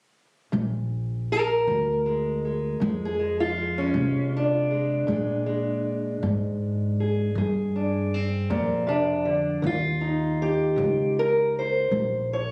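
A boxy, dark parlour-style fingerpicked steel-string acoustic guitar carries the melody up front in this soulful, laid-back acoustic country blues excerpt in 12/8, alongside a woody, thumpy pizzicato upright bass, both entering at 0.5 s and moving from Bb7 to Eb7 at 9.6 s, all captured on a phone in the room with moderate studio reverb and compression.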